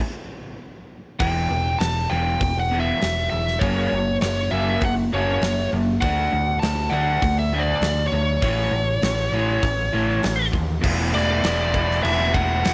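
This brooding, driving classic rock passage, cut from a longer piece, opens on a brief stop before the full band crashes in together at 1.2 seconds. A crunchy, double-tracked rhythm guitar sits up front playing a picked riff over a straight 4/4 pulse, while a growling picked electric bass, dark and round with overdrive of its own, holds down the low end. A huge arena drum kit drives things with a punchy kick, a medium-tuned snare, bright crash and hi-hat, and a pumping room sound. On top, a biting lead guitar carries the melody in a high register, its overdrive thickened by a slapback echo. The harmony moves through Em, F#, D and A before settling on an Esus4, and the excerpt ends at 12.7 seconds, all within light reverb and small room ambience.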